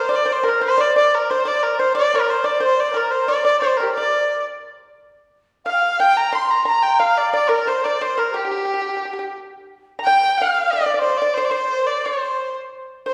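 Tender and graceful, this short passage of Chinese traditional chamber music moves at an unhurried 89 BPM in a straight 2/4, with a new section arriving at 10.0 s. A clear, slightly nasal erhu carries the bowed melody up front with light vibrato and portamento, while a mellow large dizi with a buzzing membrane and a crisp chiff sits very quietly in the distance and a percussive, fingerpicked pipa adds a second line. The trio is heard through the lush reverb of a recital hall.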